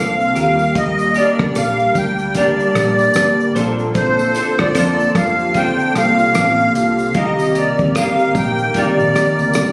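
A reedy, close-miked accordion carries the melody up front, its clear single-reed tone thickened by ensemble chorus and a slapback echo. This short, laid-back excerpt of hazy indie and bedroom pop has a swung sixteenth-note feel. Beneath it, an electric guitar through a small old amp plays accompaniment, slightly broken-up and picked, with subtle chorus and a vibrato effect. A hollow, flute-like pad warbles softly in the background with a long release, and a foam-muted, round vintage bass anchors the low end. A cloth-damped, thuddy drum kit with a tight kick, rim click, hi-hat and shaker enters at 0.2 seconds, followed by a faint jingly tambourine at 0.4 seconds. The harmony moves through Ebmaj7, Bbmaj9 and Cm7, and the whole is captured as if on a phone in a small room, with compression and studio reverb.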